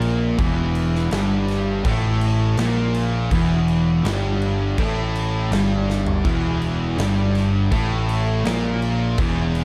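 Stoner and doom metal at 82 BPM in 4/4, this ominous, sludgy excerpt sits on an E minor chord for its 9.6 seconds, with a dark, dry production. A fuzzed, overdriven picked electric bass sits up front. A raw, double-tracked overdriven garage guitar and two thick, distorted fuzz guitars in the background carry the riff, while a big-room acoustic rock kit with punchy kick, medium-tuned snare, toms and bright crash cymbals plays a fill at 5.9 seconds.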